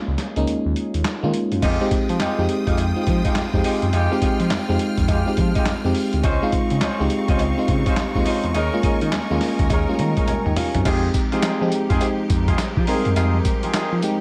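Bouncy and confident, this new jack swing R&B excerpt in F minor moves at 104 BPM with a swung sixteenth feel. It opens on a short break where a glassy, bell-like FM electric piano with chorus, a smooth gliding synth bass and a gritty, compressed sampler-style drum kit (thumpy kick, handclaps, tambourine, toms and gated reverb) set the groove. At 1.6 seconds lush bowed strings, a dark, distant horn section playing delayed stabs and a very quiet metallic cowbell join over chords that move from Fm9 through Dbmaj9 and Eb7sus4, and the electric piano and drums each play a fill before Fm9 returns at 10.9 seconds in a dry mix.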